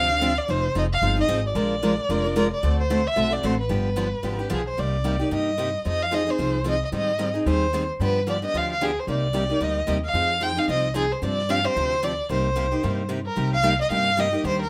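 Moderate studio reverb gives this short passage, cut from a longer piece, a natural room ambience, with the violin and guitar both placed up front. It's fiery, virtuosic acoustic string swing in the jazz manouche style, racing along at 224 BPM in a swung 4/4 in C minor, with the harmony moving through chords such as Fm9, Cm9 and G7sus4. A single bowed violin carries the expressive melody with vibrato, portamento and a smooth top, while a bright, fresh-stringed picked steel-string acoustic guitar accompanies with audible finger squeak, and a woody pizzicato upright bass anchors the low end, all three playing throughout the roughly 14.7 seconds.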